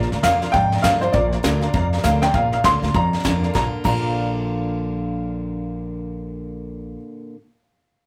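Retro and upbeat, this brief rockabilly cut swings along as a clear, boxy upright piano carries the melody over a jangly, detuned honky-tonk piano in the background, bright picked steel-string acoustic guitar with audible finger squeak, a growly, woody pizzicato upright bass up front, and a soft brush kit with a fat snare and dark cymbals that plays a fill at 2.0 seconds and drops out at 4.0 seconds, all set in a rough rehearsal-room sound with tube saturation and moderate room ambience.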